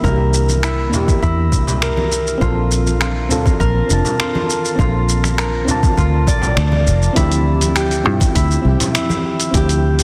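A round, up-front fingered electric bass anchors this wistful sunset chillout piece at 101 BPM, where a dark, warbling vintage FM electric piano with chorus, tremolo, delay and shimmer reverb and a ringing, fingerpicked Celtic harp playing arpeggios move over C7, Bbmaj7 and Dm11 chords, while a soft, overdriven electronic kick, a gritty, tape-toned sampler-style kit of finger snaps, hi-hat and shaker, and distant congas in the background hold a straight 4/4 feel under light reverb and a dense, heavily limited master.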